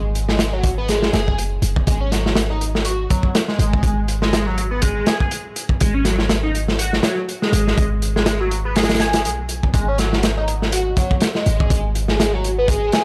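A deep, boomy 808-style bass opens this funky, raw breakbeat excerpt at 0.0 seconds, its sine tone carrying a noise layer with a fast attack that decays, sitting up front in the low register around G# minor. A crunchy breakbeat kit arrives at 0.2 seconds, with hi-hat, a tight kick and a medium-tuned snare that sound acoustic and dark, saturated and gritty, with a rolled-off top and a small-room character. At 0.3 seconds an overdriven synth lead takes up the riff, a screaming, guitar-like blend of sawtooth and pulse waves with a fast attack, sustained notes and vibrato, bright and distorted. The lead is coloured by phaser, tube saturation, ensemble chorus, cassette tape texture and digital delay. The groove moves at 122 BPM in 4/4 with a swung sixteenth-note feel over a single G#7 chord with its third omitted. The whole excerpt sits in small room ambience, with audible lossy compression artefacts.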